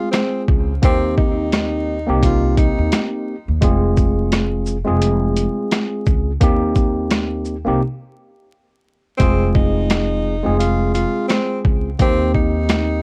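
Worn, warbling cassette tape with vinyl crackle and drifting pitch colours this dry, close-sounding boom-bap hip-hop excerpt, whose mood is reflective yet tough. A sampler-style drum kit sits up front with a swung feel, its thumpy kick, medium-tuned snare, rim click, hi-hat and shaker overdriven and roughened by vintage 12-bit grit, as if re-recorded in a small room. Beneath it, a woody, dark pizzicato upright bass anchors the low end. A slightly out-of-tune tine electric piano plays clean, direct accompaniment over a minor chord cycle throughout. A breathy, close-miked tenor saxophone carries the jazz-style solo melody with vibrato and a warm subtone, stepping out at 3.1 seconds and returning at 9.2 seconds after opening the piece at 0.0.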